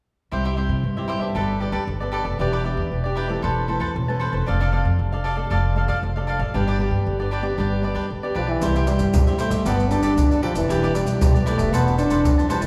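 A bright, crisp picked cavaquinho, a fingerpicked classical nylon-string guitar with fresh strings and audible finger squeak, and a woody, thumpy pizzicato upright bass set up a sunny, festive samba and choro groove in C major at 116 BPM from 0.3 s, cycling through a progression that starts on C and begins again at 8.6 s. A mellow, jazz-style trombone solo with vibrato and scooped notes takes the melody from 8.4 s, and at 8.6 s maracas, a deep surdo and pandeiro, played with soft hands, join up front. The whole passage sits in the wet reverb of a recital hall, as if caught in a church or concert hall, and is cut from a longer piece.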